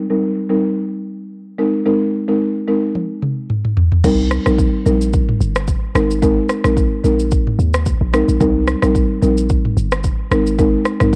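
A home cassette recording with a digital ambience frames this smooth, sultry afrobeats excerpt, which opens on a woody, buzzing marimba played with soft mallets, dry and dark under a filter sweep and carrying a tape tint. A produced electronic afro-pop kit arrives at 3.0 seconds with a fill of toms, crash, rim clicks and shaker over a deep kick, sitting up front. At 4.0 seconds a boomy, sine-like 808-style bass with a noise layer, a fast attack and a decaying tail joins the lightly swung groove as Cm7 and Abadd9 alternate.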